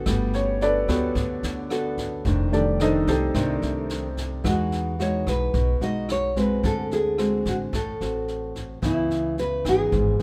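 Lightly reverberant and close, this relaxed, sophisticated bossa nova excerpt opens with a smooth, vintage grand piano taking the lead over fingerpicked nylon-string guitar with audible finger squeak, a woody, thumpy pizzicato upright bass and a brushed drum kit with boomy kick and rim clicks, until the piano drops out at 4.5 seconds and a thumb-plucked classical nylon-string guitar takes the melody through lush chords such as Emaj9, D7#11 and C#m9.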